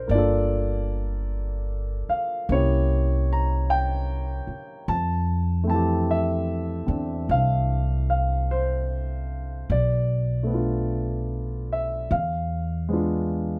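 A concert grand piano and a pizzicato upright bass open together, unfolding an intimate, romantic jazz ballad in F major at a slow 50 BPM in 4/4 with a lilting swing on the eighths, tuned slightly low to A4 = 438 Hz. The piano offers natural, deep-bottomed accompaniment while the woody, growly steel-string bass plays alongside it, both up front in a dry, rough home-demo sound. The chords move from Gm7 through C7b9 to a long Fmaj7, then turn toward Bm7b5 and E7b9 as this 13.6-second fragment of a longer piece breaks off.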